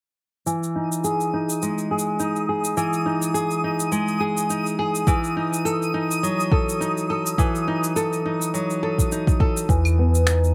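Pastoral and delicate, this folktronica piece centres on an up-front nylon-string guitar fingerpicking classical-style arpeggios through tape echo, plate reverb and a low-pass filter sweep, over tape-warm electronic shaker, claves and finger snaps recorded in a small room. A twinkling, sparkling granular texture with an octave-up shimmer floats high above, and a soft electronic kick joins at 5.1 seconds as the harmony moves from Emaj7 to D#dim. At 9.7 seconds a deep, round sine sub bass arrives up front on a return to E.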